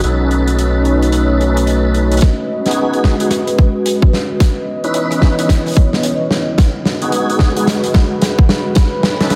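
An overdriven electronic kick drum, tight, layered and up front, punches into this gritty, playful glitch hop excerpt at 2.2 seconds, just as the saw-edged, tube-saturated synth bass with its resonant filter pluck and oscillator sync stops after holding a low B. The groove sits at 110 BPM in 4/4 with a 16th-note swing, and a big-room rock kit adds hi-hat, rim click and a medium-tuned snare with a rolled-off, smooth character. A deep, moody analog pad sustains detuned chords in G# Phrygian through B9, G#m7 and C#m9, with sidechain pumping and a filter sweep in the opening bars. Lightly overdriven tonewheel organ stabs carry chorus vibrato, a slow rotary speaker, analog delay and a grainy 12-bit sampler grit, while a warbling, nostalgic tape-like pad drifts in the background with its own reverb. From 2.2 seconds the track builds with a drum fill, and the plate reverb and studio ambience leave the mix dreamy and soaked.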